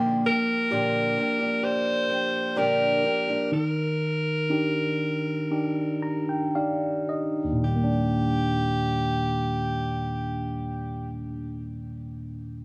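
Pop at a slow 54-66 BPM in Eb major, hopeful and emotional, cut from a longer piece and set in a small, echo-heavy room. A clean, up-front tine electric piano with phaser carries the accompaniment and adds a fill from 5.5 to 7.6 seconds, while a picked steel-string acoustic guitar with fresh strings and audible finger squeak plays arpeggios only until 3.5 seconds. An edgy, scooped alto saxophone takes the solo melody from 0.3 seconds, bathed in dub echo, as the tempo slows through the opening section and the harmony moves from Bb6 to Ebmaj7 at 3.5 seconds.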